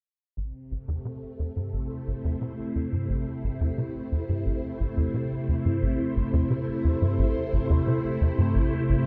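Ambient, sequencer-driven space music with a mysterious, hypnotic mood, heard here as a short fragment cut from a longer piece over a steady straight 4/4 pulse. A tight sequencer bass drives a repeating riff in the low register, its punchy sawtooth and square-wave tone shaped by a filter pluck and ring modulation, with a fast attack that decays into a mellow tail, thickened by ensemble chorus and delay. Above it, a phased string machine holds sustained chords in a bright, vintage, warbling voice, its slow attack and long release blurred by ensemble chorus and a swirling phaser. Both parts enter at 0.4 seconds and fade in together across the passage, with the bass ending at 9.0 seconds and the strings at 9.1 seconds, resting on a single A minor chord throughout. A wet scoring-stage reverb with a 2.2-second decay surrounds the pair, while both parts stay up front in the mix.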